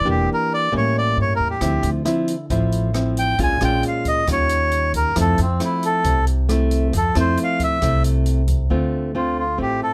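Sunny and sophisticated, this short bossa nova fragment moves at 136 BPM in a straight 4/4 feel, centered on F major. A reedy, breathy melodica sits up front, carrying the melody as a solo through the first 8.7 seconds, ranging from C4 up to Ab5 with a nasal, plastic-cased tone. Beside it, a dark, fingerpicked nylon-string guitar supplies classical-style accompaniment, with audible finger squeak adding intimacy. An upright bass played pizzicato gives woody, warm support on steel strings, while an open jazz drum kit enters at 1.6 seconds with hi-hat, rim click and a boomy kick, sitting low in the mix. The harmony travels through jazz-flavoured chords such as Em7b5, A7b9, Dm9 and Eb9 before settling on Fmaj7, and the close, detailed microphones with little reverb give the acoustic instruments a dry, present sound.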